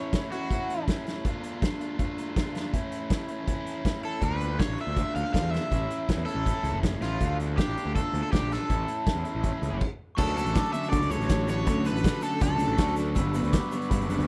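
A loose indie drum kit in a pumping small room drives this jangly, upbeat indie rock excerpt at 161 BPM, with a dark, compressed overdriven guitar riff and a bright hollow-body lead with slapback echo, joined by growly fuzz bass at 4.2 seconds, then after a brief stop a twangy chorused twelve-string, ringing glockenspiel, faint vintage string-machine violas and a grainy tube shaker at 10.2 seconds.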